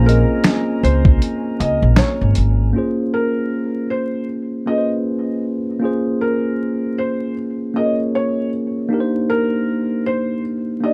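A swung 78 BPM lo-fi hip hop groove in Bb dorian opens with a gritty, compressed sampler-style kit of thumpy kick, snare, hi-hat and finger snaps beside a woody pizzicato upright bass and a breathy flute section holding sustained chords, but drums, bass and flute fall away by 2.7 seconds, leaving a mellow, cassette-toned tine electric piano and a soft felt-muted upright piano melody with audible action noise to carry the melancholic, hazy mood through dark, vinyl-crackled production and light reverb as the harmony moves from Bbm9 to Cm9 at 8.9 seconds in this cut from a longer piece.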